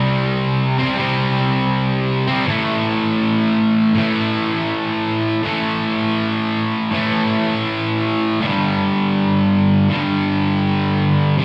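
Played in free time, this short punk fragment from a longer piece is carried entirely by a single distorted electric guitar, upbeat and rowdy in mood. The guitar is picked, double-tracked and compressed, sitting up front with a gritty edge, and it ranges from G2 to C4. It opens on a C5 power chord, moves to A5 at 2.5 seconds, and lands on G5 at 8.4 seconds, with the shift at 2.5 seconds marking the start of a longer second passage. Slapback echo and tape echo trail behind the distortion, giving the chords a doubled, rattling tail. The sound comes from a live gig heard through the venue's PA, so a moderate club reverb wraps the guitar in the feel of a small club room.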